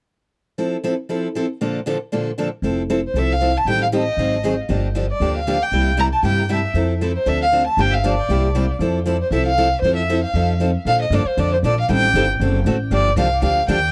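A brisk 234 BPM swing in 4/4 drives this playful, charming cut of jazz manouche, with the bright, fresh-stringed picked acoustic guitar opening alone at 0.6 seconds on Fmaj7 and Bbmaj7 in F major. A woody, thumpy pizzicato upright bass on gut strings joins at 2.6 seconds, and half a second later a dark bowed violin takes the melody with vibrato, portamento and a smooth top, its line touched by tape echo as the harmony moves through Am7b5, Ab7, Gm7 and C7 before shifting to Bb major at 10.9 seconds. All three players sit up front in a dry, close 1970s-style studio sound.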